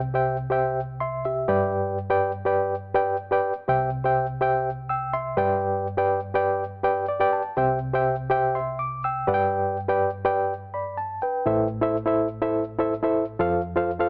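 A barky, reedy electric piano plays alone, lightly overdriven and shimmering with fast tremolo through its built-in speakers, as this uplifting, danceable soul excerpt moves at 123 BPM in straight 4/4 in C major. Sitting up front in a dark production with light reverb, the bright piano alternates C and G chords, tosses in a short fill at 6.8 seconds, then shifts to A minor at 11.5 seconds for a new section before moving to F.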